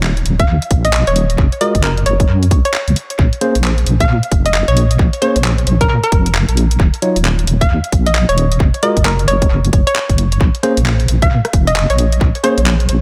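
A swung two-step garage groove at 133 BPM in 4/4 opens this moody, late-night cut in Bb minor, its sixteenths pushed with a 62% shuffle. The garage kit supplies handclaps, bright hi-hats and rim clicks soaked in analog delay, while a tight, up-front electronic kick joins at 0.4 seconds. Underneath, a deep, soft wobble bass built from sawtooth and sine tones sits prominently in the mix, compressed and chorused, pumping against the sidechain as the chords move from Eb7sus2 to Gb5 to Bbm. A hollow, bouncy square-wave pluck carries the melody, its detuned, ring-modulated tone decaying through chorus and delay. From 1.6 seconds a worn, slightly out-of-tune tine electric piano adds lightly overdriven stabs with gritty 12-bit texture, as if heard through built-in speakers. Light reverb and digital ambience give this echo-heavy fragment of a longer track a hazy, nocturnal depth.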